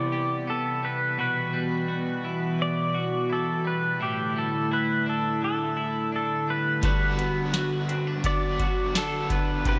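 In a straight 4/4 pulse, this floating, blissful dream pop excerpt opens with a bright, clean pedal steel guitar melody carried by analog chorus, shimmer reverb and delay, over a hollow, flute-like soft pad holding sustained chords and a clean electric guitar picking arpeggios with subtle chorus, shimmer reverb and delay, as the chords move from Cmaj7 through Emadd9/B to A7sus4. At 6.8 s, as the harmony settles on Gmaj7, a booming analog drum machine with a deep kick, tonal snare and metallic hats arrives up front with gated reverb, joined by a dark, double-tracked garage guitar with overdrive, tremolo and lush chorus. The bright 1980s-style digital production sits in a lush hall reverb.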